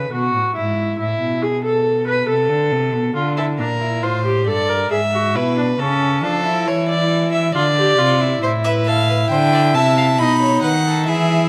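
Classical baroque-style fugue for string quartet in 3/4, a contemplative, serious excerpt at 68 BPM with period-style, gut-string playing heard through light reverb and close, detailed microphones. Viola and cello open together at 0.0 s, the viola's reedy accompaniment with light vibrato sounding distant while the cello anchors the bass. A second violin line with a rich tone joins at 3.4 s, and at 8.6 s a nasal, airy-bowed violin takes the melody in its upper register over harmony that moves from Am before landing on B7.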